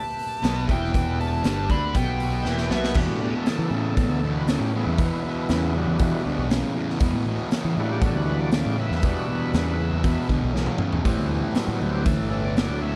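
A dry sound with little reverb frames this smoky, gritty slice of blues rock and southern rock in a straight 4/4, cut from a longer piece. A biting, overdriven lead guitar opens with a short melody over thick, overdriven tonewheel organ chords turning through a slow rotary speaker, while a double-tracked, compressed fuzz guitar riff sits up front beside a dark, round fuzz bass and a saturated garage drum kit with a punchy kick and a pumping stone-room ambience. After a drum fill at 2.5 seconds, the organ takes over as soloist from 3.0 seconds, with another fill at 10.6 seconds moving the chords from Em7 to Am7.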